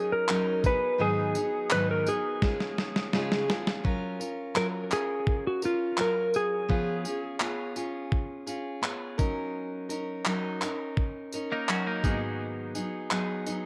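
Light reverb surrounds this easy-going, heartfelt acoustic pop piece, where a dark, full-bodied picked dreadnought acoustic guitar and a gritty, compressed soul drum kit of thumpy kick, snare, handclaps and tambourine sit up front, a clean slide lap steel with tape echo carries the melody until 7.4 seconds, and a bright, twangy twelve-string electric guitar adds a brief echoed second line at 11.5 seconds.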